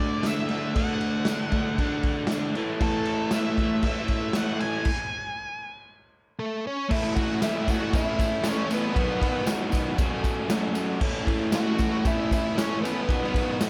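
A straight 4/4 garage rock groove at 117 BPM drives this raw, rowdy excerpt in A major, where a saturated drum kit with a punchy kick and a medium-tuned snare and a crunchy, double-tracked overdriven guitar riff sit up front beneath a dark octave-fuzz lead melody, a mellow vintage combo organ holds clean chords in the background, a jingly tambourine adds percussion, a stop runs from 4.9 to 6.9 s, and the music shifts to A lydian at 6.9 s under light reverb.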